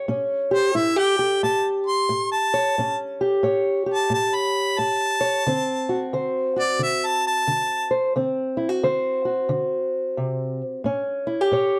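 A dark, warm production with light reverb frames this gritty, laid-back acoustic country blues, cut from a longer piece. It moves at 89 BPM in 4/4 with a swung eighth-note feel. A fingerpicked old ladder-braced acoustic guitar, woody and boxy with the dull ring of old strings, sits up front as accompaniment for the full 11.8 seconds, moving from A7 to D7 and back to A7 near the end. A bright, close-miked harmonica enters at 0.5 seconds and carries the melody in a jazz-styled solo, its soft attack, scooped notes and light vibrato set in plate reverb. The harmonica stops at 7.9 seconds, leaving the guitar alone to close the passage.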